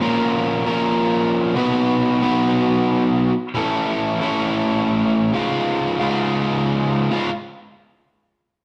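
Confident and driving, this rock excerpt features a lone overdriven electric guitar, dark, picked and double-tracked, sitting compressed and up front as it moves through Bbm, Cb, A and Db before falling silent at 7.3 seconds, all set in a wet stone-room reverb with the rough feel of a rehearsal-room recording.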